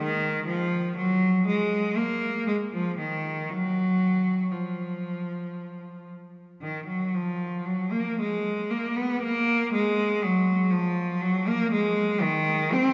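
A solo cello, bowed by one player, carries this brief cut from a longer baroque-style suite movement, its clear, smooth tone shaded with vibrato. The mood is solemn and introspective, moving at a slow 59 BPM in 3/4 with uneven beats and a rubato feel that lets the phrases breathe freely. The line stays within a compact middle range from Eb3 to C4, and the playing sounds even and unhurried across the full 12.9 seconds. Although the cello sits up front, it also carries a distant quality, wrapped in a wet church reverb with a long 3.5-second decay. The sound is soft at the top, with nothing above 7.6 kHz, giving the recording a rounded, resonant glow.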